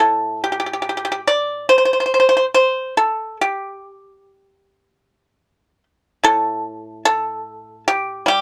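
The rhythm moves in a free, rubato pulse around 73 BPM in 4/4, giving this short passage of Chinese traditional solo plucked-string music a flowing, elegant character. A single pipa carries the whole piece from 0.0 to 8.4 s, ranging from A2 up to D5. Played with fingerpicks, the acoustic instrument sounds bright and percussive, placed up front. The recording is dry and close, in the manner of a 1970s studio, with little reverb around the strings. Tuned slightly under standard pitch at A4 = 439 Hz, the fragment is lifted from a longer work.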